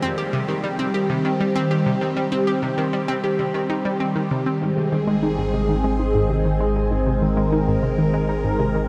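A dreamy, reverb-soaked mix with a huge, lingering ambient tail opens this short cut from a longer piece of ambient, sequencer-driven space music in Ab major, moving at 98 BPM in a straight 4/4 with a luminous, expansive mood. From the start, a swirling phased analog pad holds sustained chords up front, its detuned sawtooth tone slowly evolving through phaser, chorus and shimmer reverb. Alongside it, a bright analog pluck plays a riff with a fast attack and short decay, its ring-modulated edge carried by chorus, tape echo and shimmer reverb. The harmony shifts from Cm to Ab at 4.6 seconds, where a deep, dark round analog bass enters on Ab1 and a soft, full-bodied pluck adds barely audible arpeggios. Over this second half, a filter sweep colours the arpeggio sound as the pad sustains through to 8.9 seconds.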